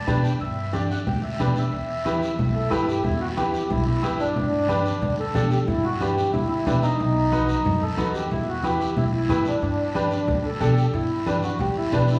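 A lush recital-hall reverb surrounds this short cumbia passage cut from a longer piece, lending it a church-like resonance and a sense of space. The mood is fiery and passionate, with a reedy, smooth accordion sitting up front and carrying the melody from the first moment, its slow beating giving the tone a gentle shimmer. A brilliant, polished upright piano fills in the accompaniment with long sustain, while a woody, thumpy upright bass played pizzicato on gut strings anchors the low end with a dark tone. Bright, thin-skinned congas played with soft hands and a raspy, saturated guiro drive the percussion, the guiro tucked well behind the other parts. The harmony moves through G, E minor and B7 across its roughly 12 seconds, ending on G at 9.6 seconds.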